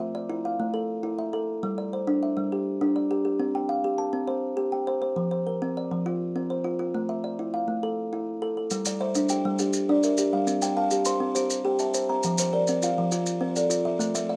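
A straight 12/8 pulse at 136 BPM drives this trance-like, hypnotic excerpt of southern African traditional music in G dorian, where an up-front, woody kalimba with a hollow-box ring spins interlocking mbira-style arpeggios from the start, joined at 8.7 seconds by grainy, vintage-toned maracas and at 8.9 seconds by a softer buzzing kalimba on a solid board, airy and mellow, as the cycle passes through Gm, C and F under light reverb.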